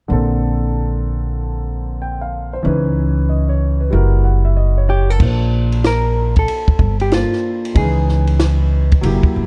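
A dark, mellow baby grand piano and a woody, growly upright bass open this smooth jazz-hop excerpt together, the piano's worn tone ringing with long sustain over rich chords such as Bbmaj9, Dbm9 and Gb7b9. The plucked bass sits up front on steel strings, deep and warm beneath the keys, while a swung sixteenth-note feel gives the hip hop groove a relaxed lilt. At 4.9 seconds a clean, hollow-body electric jazz guitar enters with a fingered melody in a narrow middle range, its tone shadowed and dark. Just after, at 5.2 seconds, a compact cocktail drum kit joins for the second section, dry and natural, with a tight kick, a high-tuned snare, hi-hat, and dark ride and crash cymbals placed close to the listener. The whole is set in a small room ambience with a dark, warm production, giving the passage a late-night, lounge-like calm.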